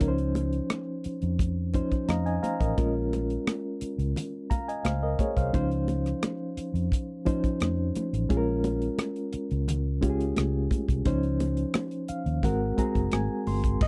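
Lush 1970s-style soul with a smooth, warm mood, in a straight 4/4 groove that sits on lush Dbmaj9 and Bbm7 chords before turning to Ab9 near the end. A reedy, lightly overdriven electric piano with fast tremolo, heard through its built-in speakers, carries the accompaniment and adds fills at 1.7 and 11.7 seconds. Beneath it, a dark, round, foam-muted fingered bass and a tight, polished funk kit of kick, hi-hat, rim click and crash sit up front, while bright, high-tuned congas played with soft hands stay in the background of this dry, close studio recording.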